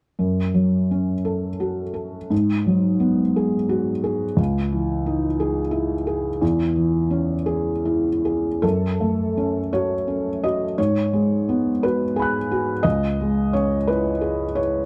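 Neoclassical minimalist piano in a reflective, intimate mood, this short cut from a longer piece has a solo felt-muted upright piano drifting through F# dorian in a rubato 6/8 at 57 BPM, its soft, mellow tone sitting up front with audible action noise in a dark, lightly reverberant production as it cycles through F#m, G#m7, C#madd9 and E6, then returns to F#m, G#m7 and C#madd9 when a second section begins at 8.6 seconds.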